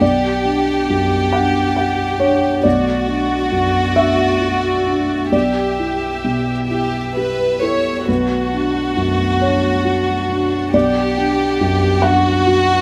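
A slow, rubato lilt in 6/8 carries this fragile, longing neoclassical fragment for piano and strings, cut from a longer piece. A felt-muted upright piano, dark, mellow and close, lays down the accompaniment, while a chamber violin section sings the melody up front, played sul tasto with a soft attack and light vibrato. Far behind them, a rich, smooth string section holds sustained chords through a gentle progression that moves from Gmaj7/B through D6/B, Em7/B and Bm7 and back, all set in a light reverb.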